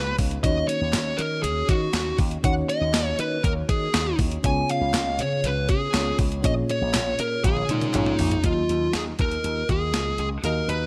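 Nostalgic yet urgent, this short cut from a longer 1980s-style pop track moves in a straight 4/4 over minor-key seventh chords before settling on an added-ninth harmony near the end. A dark, fuzz-distorted lead guitar carries the melody up front, its picked, compressed tone trailed by a digital delay. Beneath it, an FM electric piano layered with a soft pad supplies lush, dreamy accompaniment, detuned and mellow with chorus and tremolo, while a bright, punchy slap bass runs through an envelope filter. A clean 12-bit drum machine with a thumpy kick, medium-tuned snare, hi-hat, tambourine and toms sits up front in gated reverb, tape-warm and sampler-like, and it plays a fill from 7.4 to 8.4 seconds into the closing section. A very quiet, hollow group handclap with a vintage, band-limited character joins at 0.9 seconds, and the whole mix sits in light reverb.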